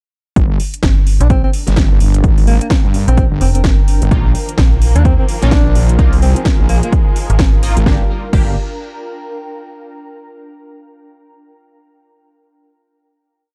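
A punchy, overdriven four-on-the-floor kick drives this bouncy, gritty bass house piece at 128 BPM in 4/4, with a 59% swing on the 16ths and a G phrygian tonality. A layered house kit adds a cracking snare backbeat, metallic programmed hats and crash, both drum parts re-recorded in a large room. Two basses sit up front under the drop: a heavy, detuned sawtooth wobble bass with chorus, overdrive and sidechain pumping shifts its wobble speed, while a metallic FM bass with tube saturation plays chopped phrases answering it. From 1.2 seconds, a breathy, close-miked alto saxophone with digital delay offers short jazz-style solo phrases with vibrato and subtone, over an ethereal, airy pad with slowly shifting chords; at 4.1 seconds the harmony moves from Gm to Bbsus4 as a lush bowed string section with 12-bit sampler grit and nasal, band-passed syncopated chord stabs with phaser join in. The dark, dry production ends on a sustained Gm final chord carried by the pad until 9.7 seconds.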